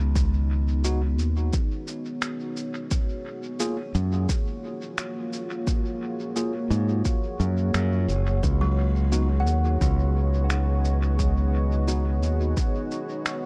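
A bright, punchy fingered electric bass sits up front in this hazy, spacious ambient dub piece at 87 BPM in Db mixolydian, swinging on 16ths over a deep, layered electronic kick with a tape-warm character. A dark, detuned sawtooth pad holds slow-attack chords moving from Db9sus4 to Gbmaj9 and back, with chorus and its own reverb, while a worn, slightly out-of-tune tine electric piano adds mellow stabs and muffled, pitched-down cabasa and finger snaps trail dub echo. Between 8.6 and 11.0 seconds a buzzing, woody kalimba rings out arpeggios in the background, also carried on dub echo.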